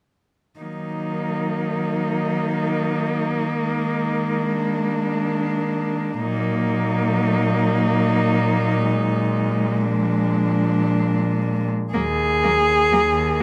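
In a rubato 3/4 at 50-69 BPM, this solemn, melancholic classical passage in Eb minor, cut from a longer piece, brings four bowed cellos in together at 0.6 s: an up-front melody with a focused, smooth top, a soft-attacked second line full of expressive portamento, a focused accompanying voice, and an even, close bass, all rich-toned with vibrato, moving from Ebm through Bb7 harmonies and returning to Ebm at 11.9 s under light reverb and detailed microphones.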